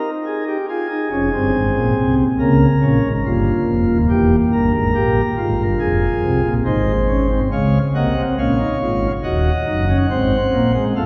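A straight 4/4 pulse at 70 BPM drives this serious, baroque-style four-part fugue in F minor, cut from a longer piece and played by a solo pipe organ whose sparkling, up-front flute stops carry a romantic voicing across a range from Eb1 to Gb5, with chords moving from F minor through B-flat minor and E diminished before turning to D-flat at 7.5 seconds, all bathed in the long, wet reverb of a church.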